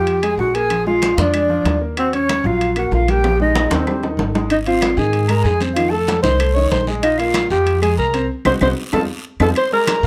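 A dark, up-front alto saxophone leads with vibrato and scooped notes over a breathy, bright flute line, a smooth vintage grand piano and a woody pizzicato upright bass in this sultry, driving Afro-Cuban jazz excerpt in Bb minor at 190 BPM, where hard-hand congas, ringing timbales and background claves push the groove, a drum fill arrives at 3.2 seconds, a raspy guiro joins at 4.5 seconds, and a band accent lands at 8.3 seconds, all in light reverb.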